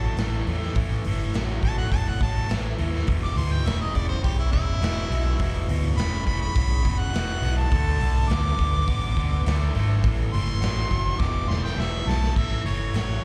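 A bright, overdriven harmonica carries the melody with vibrato from the start, its slapback echo giving the solo a raunchy, swaggering edge in this blues rock and southern rock cut taken from a longer piece. Beneath it, a double-tracked distorted electric guitar picks out a low, bright-toned riff, also treated with overdrive and slapback echo. A vintage muted fingered electric bass sits up front, dark, round and punchy with an amped tone. The raw garage drum kit enters at 0.2 seconds with punchy kick, medium-tuned snare, hi-hat and crash, sounding saturated with a rolled-off top in a pumping stone room, and it plays a fill from 11.2 seconds before the chords land back on A at 12.4 seconds. The whole performance comes across as a live club gig heard through the venue's PA, with small room ambience and club reverb around the straight 4/4 feel.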